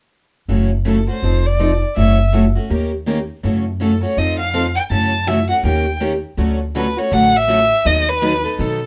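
A moderate studio reverb gives this short slice of a longer piece a snug, natural room, with the upright bass and the violin sitting up front. It is acoustic string swing in the jazz manouche style, playful and buoyant at 163 BPM in 4/4 with a light swing on the eighth notes. Two picked steel-string acoustic guitars carry the accompaniment from 0.5 s: one a bright concert instrument, the other a parlour guitar with fresh strings, plugged in and sitting lower in the mix. Beneath them the pizzicato upright bass on gut strings sounds woody, dark and thumpy. The bowed violin enters with the melody at 0.9 s, its tone warm and expressive with vibrato, portamento and a smooth top. The harmony rocks between F#m7 and F7 or Eb7 through the opening stretch, then turns at 6.4 s to Dmaj7 and B7/D# for a contrasting passage.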